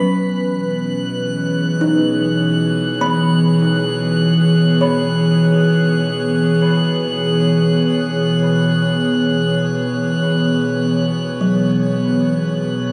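An airy, breathy pad sustains dark, full-bodied chords up front from the start of this weightless ambient fragment at 50 BPM in 3/4, over a C#m/B harmony, while a woody kalimba rings out smooth, warm arpeggios with dub echo in the background and a bright, glassy texture of drifting overtones hovers high above, all bathed in a wet spring reverb with cassette-tape grain and small-room ambience.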